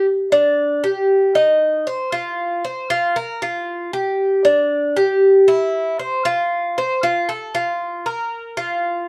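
A picked acoustic Cuban tres plays solo and up front in this relaxed, sunny Latin excerpt in a straight four-four feel, its metallic double strings, some doubled at the octave, ringing through moderate studio reverb in a dark production for about 9.1 seconds.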